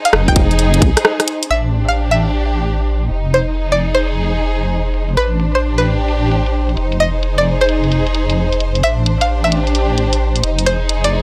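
A dry, gritty hardware sound with digital ambience frames this soulful, skippy two-step UK garage excerpt at 131 BPM, swung on the sixteenths and alternating between Fm7 and Am7. Lush, bowed symphonic strings with vibrato sit up front and pump under sidechain, while a bright, twangy resonator pluck carries the melody through chorus and analog delay over a deep, dark wobble bass. A tight, tape-warm electronic kick punches in from 0.3 to 0.9 s before a short break at 1.0 s, and the layered garage kit of filtered hi-hats and rim clicks, present from the start, takes on a filter sweep from 1.5 s onward.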